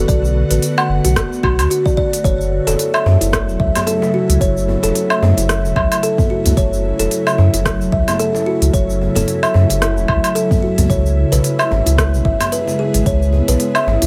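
A lightly reverberant mix opens this earthy, meditative slice of organic downtempo, with a lilting swing. Up front, a woody, ringing kalimba plays delayed arpeggios over a round, sine-like sub bass and an ethereal pad with chorus, phaser and sidechain pumping, moving through Bm7, F#m7 and C#m7. A soft, tape-warmed electronic kick and a small-room kit of crisp hats, rim click, shaker and woodblock carry the groove, and from 2.7 seconds a deep djembe with metal rattles sits distant in the background.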